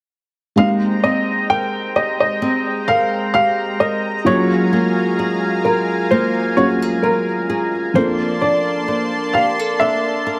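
R&B in Ab major at a slow 65 BPM with a light 16th-note swing, this tender, romantic excerpt runs from 0.6 to 10.4 seconds, moving through Abmaj9, Gbmaj9 and Bbmaj9 chords. An up-front baby grand piano carries the melody with tape echo, its action noise audible, while a felt-muted upright piano adds dark, mellow accompaniment beneath. A fingerpicked flamenco guitar plays arpeggios, and a lush, airy unison pad with chorus holds sustained chords, all set in a light reverb.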